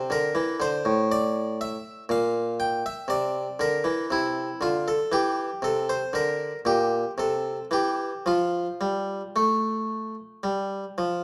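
Radiant and dance-like, this short baroque-style suite movement for solo harpsichord unfolds in F major at a gentle 54-61 BPM in 4/4, its rubato pulse breathing freely across a span of 11.2 seconds cut from a longer piece. The Italian-style harpsichord, strung with a single set of strings, sits up front with a bright, airy, plucked tone, ranging from A2 to G5 as it moves from Amadd11 through Bb69, C, Bb/D and C again before settling on F at 8.3 seconds. A moderate recital hall reverb and a dark, warm production frame the instrument's sparkle.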